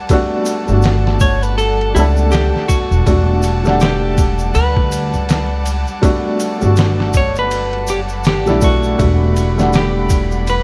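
A felt-muted upright piano and a dark chamber string section open this smoky, melancholic trip hop excerpt together, the piano soft and intimate with audible action noise, tremolo and tape echo, while the bowed strings hold smooth, vibrato-laden chords coated in 12-bit sampler grit. At 0.1 seconds a compressed, pitched-down sampler-style drum kit arrives with a thumpy kick, a medium-tuned snare and ride cymbal, joined by a band-limited tube shaker tucked in the background. By 0.7 seconds a woody pizzicato upright bass sits up front, anchoring the groove at 81 BPM with a lazy 16th-note swing in E dorian over a single Em11 chord. A dark, clean, picked electric guitar carries the melody from 1.2 seconds, its lines roughened by sampler grit and trailed by tape echo. Vinyl crackle and studio reverb wrap the whole mix in a dusty, late-night haze.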